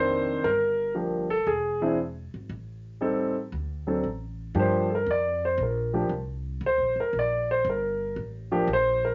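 Late-night and moody, this brief swinging jazz piano trio cut features a warm, up-front grand piano carrying the melody with long sustain and taking a solo from 4.6 seconds, over a woody, thumpy pizzicato upright bass in a modest studio room with a soft, darkened top end.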